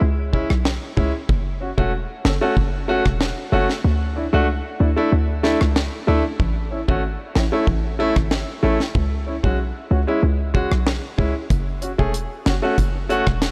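Summery and bouncy, this dancehall excerpt at 94 BPM moves through C#m, F#m, Dsus2 and A over a punchy, sine-toned 808-style bass with a fast attack and a noise layer. A clear, polished baby grand piano with long sustain pumps against the sidechain. A dry, dark reggae kit with a high-tuned snare, rim clicks and a tight kick drops its kick between 3.8 and 6.4 seconds, all set in a small room with light reverb.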